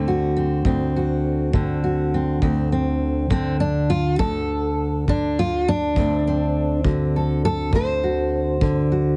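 A rollicking 12/8 pulse at 68 BPM drives this laid-back acoustic country blues in D mixolydian, cut from a longer piece and resting on a single D7 chord. Up front, a warm, full-bodied dreadnought steel-string guitar carries the fingerpicked melody and solo from D2 up to C5, with audible finger squeak. A punchy, natural-sounding kick drum with brushes, recorded in a small room, enters at 0.6 seconds, and light reverb and a heavily compressed, radio-like sound frame the short clip.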